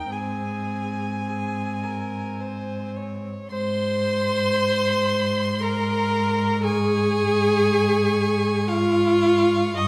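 The sound is bathed in a wet recital hall reverb with a 1.7 s decay, giving this short cut from a longer piece a lyrical, warm glow. It is a slow romantic movement for string quartet in Ab major and 3/4 time, moving at 52-60 BPM with a flexible rubato feel. The first violin carries the melody high in its range with a warm, expressive tone, soft attacks, vibrato and gliding portamento, while the second violin plays a smooth, even second line from close by. The rich viola sits up front as the most prominent voice in the blend, supplying an even, vibrato-laden accompaniment, and the cello holds a low, deep-toned bass beneath it. All four bowed players sound together from start to finish as the opening theme repeats at 3.5 s, with the harmony resting on Ab before shifting to Db over an Ab bass at 6.6 s.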